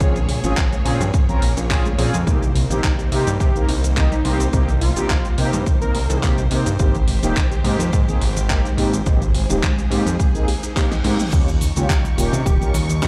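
Groovy, sunny nu-disco at 106 BPM with a light sixteenth-note swing, where a punchy up-front electronic kick and a fat, detuned sawtooth analog bass drive the groove under a layered pop kit with a fat snare and metallic hats, while mellow, brassy synth brass with chorus, sidechain pumping and tape echo, a lush background string section and a very quiet unison pluck arpeggio fill out a Bbm7–Cm7–Abmaj7–Eb7 progression. A thick, nasal, warbling unison lead with delay carries the melody from 3.4 to 6.2 seconds and returns briefly at 12.5 seconds, and a reverse cymbal and drum fill near 11 seconds lead into a soft cabasa.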